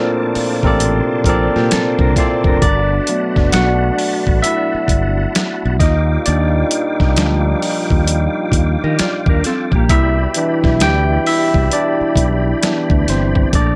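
Soulful and warm, this neo-soul R&B groove sits at a slow 66 BPM in G major, with a lazy swung sixteenth feel, and is cut from a longer piece. A bright, barky tine electric piano carries the harmony from the start and takes a solo from 2.6 seconds onward, moving through lush major-ninth chords. Beneath it, a tonewheel organ holds sustained chords with key click, chorus vibrato and a slow rotary speaker, while a clear, punchy trombone section adds tight stabs with light vibrato from the background. At 0.4 seconds a gritty, pitched-down boom bap drum kit arrives, compressed and overdriven with a thumpy kick and medium-tuned snare, alongside a growly, bright fingered electric bass, both sitting up front. A dark, clean electric guitar with tremolo slips in briefly for a second line at 1.6 and 8.8 seconds. The mix is dry, with little reverb.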